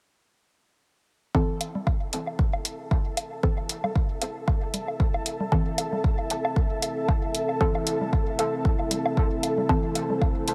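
A muted, sawtooth dub chord stab with chorus, phaser, dub echo and a filter sweep opens this hypnotic, cavernous dub techno piece at 1.3 seconds, together with a deep, tape-warm electronic kick, setting a 115 BPM groove in A minor with swung 16ths; an up-front electronic hi-hat and dry woodblock and congas with dub echo join at 1.6 seconds, and just after 2 seconds a dark, detuned, wave-folded analog pad settles into sustained chords while a grainy, flickering granular texture sits in its own reverb, with sidechain pumping on the pad, stabs, texture and percussion under light digital ambience in this passage cut from a longer piece.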